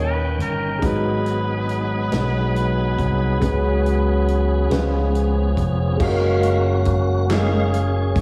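Soaked in lush hall reverb over a small room ambience, this hopeful, jubilant slow gospel excerpt in 6/8 at 46 BPM in F# major opens with a bright, forceful trumpet melody with scooped notes and tape echo over a clear, woody upright piano, a full tonewheel organ with key click, chorus vibrato and fast rotary speaker, a dark, round fingered electric bass up front, and a natural country drum kit with a punchy kick entering at 0.4 s, before the organ takes a solo from 6.0 s as the harmony lands on F#maj9 and a distant, very quiet group handclap sounds at 7.3 s.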